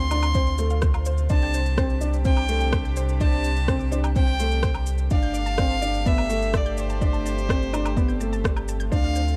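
A clear, airy violin melody opens this cinematic, hypnotic piano-and-strings electronica piece at 126 BPM, drifting over reedy, gut-toned chamber strings in sustained chords and a round sine sub bass with tube saturation and sidechain pumping. A dark, worn upright piano riff with audible action noise and digital delay joins almost at once, alongside a tape-textured electronic shaker, woodblock and rim click. A deep, layered kick drum enters at 0.3 seconds, and a detuned sawtooth unison pluck plays pumping, delayed arpeggios in the background as the harmony moves from Dm7 through Csus2 to Gsus2 in a dry, dark, warm mix.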